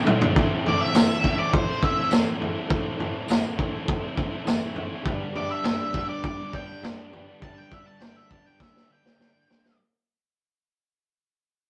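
Swaggering and gritty, this short garage rock cut at 102 BPM in A minor moves from Am to G as an up-front octave-fuzz lead guitar solos with a dark, distorted tone over a double-tracked overdriven guitar riff, punchy saturated drums with fills at the start and near 8.6 seconds, reedy overdriven combo organ chords in the background, and a jingly tambourine that drops out at 4.6 seconds, all in a rough rehearsal-room sound with tube saturation and a fade-out.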